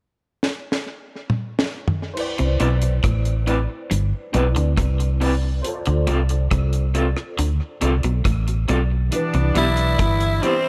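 A raspy, gritty tenor saxophone takes the melody up front near the close of this sweet, smooth lovers rock reggae excerpt, entering just after a clear, tight saxophone section, after a deep, dry drum kit with a high-tuned snare opens with a fill and round, foam-muted bass, worn tine electric piano with ensemble chorus, a twangy background guitar riff and slightly broken-up guitar stabs with tremolo settle over Cmaj9 and Dm7.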